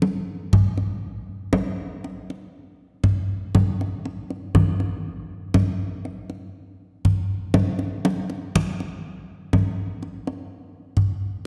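Set in a wet concert hall with a long 2.4-second reverb tail, this short portion of a longer gamelan piece moves at a serene, ceremonial 60 BPM in a straight 4/4. A lone kendang carries it from 0.0 to 11.2 seconds, its deep, acoustic voice sitting close, dry and up front under soft hands.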